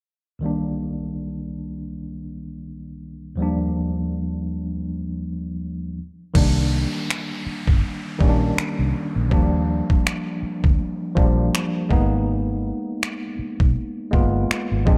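Tender and smooth, this excerpt of contemporary R&B moves at 81 BPM in 4/4 with a swung sixteenth-note feel. A mellow, worn tine electric piano opens alone at 0.4 seconds, slightly out of tune and lightly overdriven as if heard through its built-in speakers, sitting up front as it voices Cm9 and Ebmaj9 chords. At 6.3 seconds the groove arrives with a detuned 8-bit digital drum machine, sampler-style and up front, with a thumpy kick, finger snaps and crash cymbal, tape-colored and re-recorded in a small room, alongside a quieter electronic downlifter. A vintage fingered electric bass, foam-muted, amped and round, follows a moment later, and the harmony moves through Cm9, Ebmaj9 and Abmadd9. Light reverb and a dark, warm production hold the sound together.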